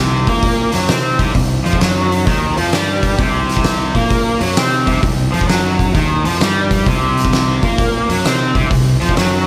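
A cranked stack guitar leads this brooding, smoky blues rock and southern rock passage, cut from a longer piece, its overdriven, double-tracked riff sitting up front with a touch of spring reverb across the range from C3 to C4. Beneath it, a fuzz fingered electric bass growls through overdrive between C2 and C3, its tone punchy and direct and amped. An oversized low-tuned drum kit enters at 0.3 seconds with hi-hat, kick and snare, sounding saturated and gritty in a bright stone room that pumps around a fat snare and a punchy kick. The trio moves at 130 BPM in 4/4 with a swung eighth-note feel, holding on a C minor chord in C minor, tuned slightly flat to A4 = 435 Hz. The overall sound is dry, with the guitar and drums pushed forward in the mix.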